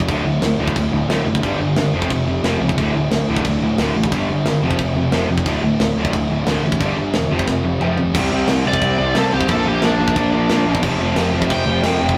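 An urgent, aggressive punk rock fragment opens at 179 BPM in a straight 4/4, with two bright, distorted, picked electric guitar riffs and a thicker, double-tracked fuzz guitar sitting behind an up-front, punchy overdriven electric bass and a tight metal drum kit. The kit has crisp cymbals, a medium-tuned snare, a firm kick and toms, while the bass carries a gritty fuzz edge that pushes the low end forward. The riffs cycle through D5, G5 and F5 chords before a drum fill at 7.5 seconds leads into a second section that shifts to C5, Bb and F5. A cranked stack guitar enters at 8.7 seconds with an overdriven solo line that rises above the wall of rhythm guitars. The whole band sounds rough, as if captured in a rehearsal room with a moderate stone-room reverb, and the passage is cut from a longer piece.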